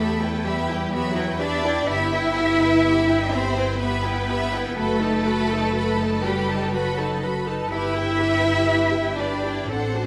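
Bathed in a scoring-stage reverb, this melancholic, solemn slice of a slow romantic movement for string orchestra moves in a rubato 3/4 at 62 BPM in E minor, with a distant violin section bowing the melody with vibrato and portamento alongside a soft-attacked, lush second violin line, smooth violas, a prominent and even cello line, and a close, warm double bass section underneath.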